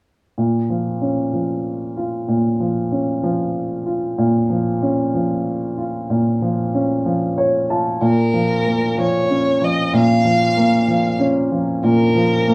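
This pop piece in 6/8 feels melancholic and aching, and it is cut from a longer piece. A baby grand piano carries the accompaniment from 0.4 seconds, its tone natural and placed up front across a broad span of the keyboard. At 7.1 seconds the piano plays a short fill that leads into the second section. At 8.0 seconds a single bowed violin takes up the melody in a narrow upper range, its sound smooth, even and warm with vibrato. The two players share one room, and a short, wet studio reverb gives the performance a close, live feel, with the instruments tuned slightly below standard pitch.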